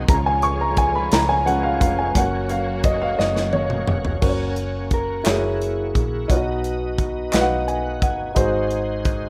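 A woody upright piano opens this slow, uplifting gospel piece in a straight 6/8, taking a featured solo with audible action noise. Beneath it sit sustained chords from a bright, lightly overdriven tonewheel organ with key click, slow rotary speaker and chorus vibrato, along with a very quiet, lush bowed string section and a round, dark hollow-body bass. An up-front acoustic drum kit with a punchy kick and bright cymbals plays a fill into the second section at 4.2 seconds, where the strings stop. A mellow, compressed electric guitar carries the melody from 3.9 seconds, and crisp group handclaps sound in the background for a short stretch. Piano and organ both add fills as the harmony arrives on a G#7 chord, all under light studio reverb in a rough, soulful home-demo mix cut from a longer piece.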